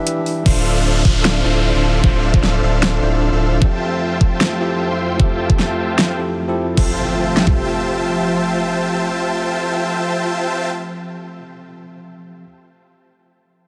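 A bell-like tine electric piano with tape echo opens this bright, playful half-time future bass passage, with an overdriven pop kit of crash, warm hats and fat snare entering at 0.1 seconds. After a brief break, at 0.5 seconds, come a second overdriven electronic pop kit of knocking kick and fat snare, an airy, breathy chorused pad in the background, a huge, detuned supersaw riff pumping under sidechain with a low-pass filter, a deep saturated sub bass that stops at 3.6 seconds, and a downlifter and impact, all over Dm9 shifting to Fmaj9 and set in light digital reverb.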